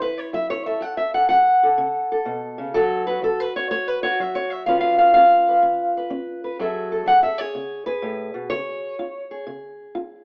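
Acoustic country blues in F# minor at 125 BPM with a swung 4/4 feel, this soulful, smoky fragment of a longer piece features a lone fingerpicked steel-string parlour guitar, dark, boxy and up front, playing solo from 0.0 to 10.2 seconds over F#m7, D, C#7, F#m9 and C#, heard through a moderate stone-room reverb with a live, AM radio character.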